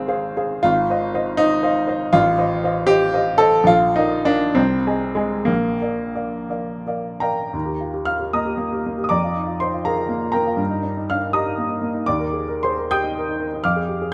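Moving in a rubato 6/8 at 53-84 BPM counted in dotted quarters, this lyrical, hopeful romantic character piece in Eb major features a solo baby grand piano with a warm, worn tone set up front by close, detailed microphones inside a moderate concert hall reverb, its harmony drifting from F minor colours through Bb before turning to Eb at 7.5 s in this 14.1-second passage cut from a longer work.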